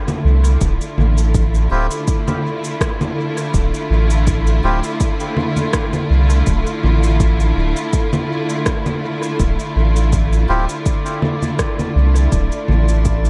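A round, up-front sub bass anchors this spacious, deep ambient dub cut from a longer piece, beneath lush, distant bowed strings holding a sustained chord, a tape-toned layered electronic kick, dub-echoed electronic congas, cabasa and rim click, and reedy, breathy melodica stabs from 1.7 s, while a glassy, chorused harmonics texture drifts in at 9.9 s.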